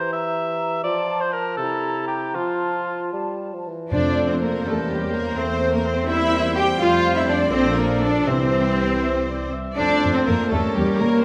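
The opening 3.9 seconds belong to the woodwinds alone: a mellow cor anglais, a clear clarinet in the background and a very quiet, hollow flute section weave second lines over a dark bassoon accompaniment, in a lively, cheerful F major movement in 6/8 at 76-85 BPM with a flexible, rubato feel. At 3.9 seconds the strings and brass join, with a close, expressive violin section carrying the melody in rich, vibrato-laden bowed tone while a second, woody violin section plays a second line in the background. Beneath them a smooth, distant viola section fills out the accompaniment, a cello section with soft attacks and portamento and a full-bodied double bass section share the bass, and a French horn section holds sustained chords. Timpani struck with hard mallets mark two brief, articulate accents, at 3.9 and 8.3 seconds. The harmony moves through diminished and dominant chords back to F, touching Bb before cadencing, all set in a moderate scoring-stage reverb, and the passage is cut from a longer work.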